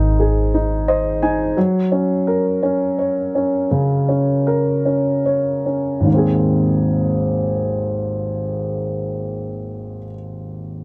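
A slow, straight 6/8 pulse of roughly 47 to 58 BPM in dotted quarters sets a romantic, heartfelt pop mood in Ab major, tuned slightly high. A baby grand piano carries the accompaniment throughout, ranging from Ab1 up to Ab5 with an open, long-sustaining tone placed close to the listener. A woody fretless electric bass, dark and round with a hollow-body character and a touch of analog chorus, holds a single Ab1 before dropping out at 1.5 seconds. The piano adds a fill from 0.5 seconds as the harmony moves from Ab to Gb, and the tempo slows until the second section begins at 6.1 seconds on an Abadd9. Little reverb keeps the sound dry and close, and the passage is cut from a longer piece.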